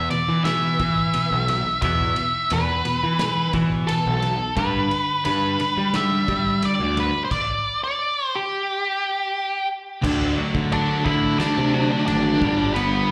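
Quiet-loud alternative rock in E minor at 88 BPM, cathartic and angsty, this live club excerpt sets a dark octave-fuzz lead guitar melody and a growly, overdriven picked bass up front over bright, twangy twelve-string arpeggios and a loose indie drum kit with a tight kick, then breaks into a stop from 7.3 to 10.0 seconds before a thick fuzz guitar riff enters at 10.0 seconds over D and G chords.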